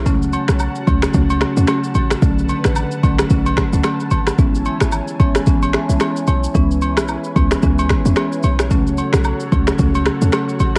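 Swung sixteenths at 111 BPM drive this hypnotic, sultry afrobeats excerpt in F# minor, where an up-front electronic afro-pop kit with a deep, tape-warm kick, finger snaps, rim click and shaker sits over a punchy, tight 808-style sine bass with a fast attack, while a woody rosewood marimba and close, dry acoustic agogo bells and woodblock add color beneath a soft, lush, detuned sawtooth unison pad with slow attack, chorus, phaser and cassette-tape grit, all moving through F#m, Bm7, Amaj7 and C#m7 before returning to F#m in a lightly reverberant home-cassette sound.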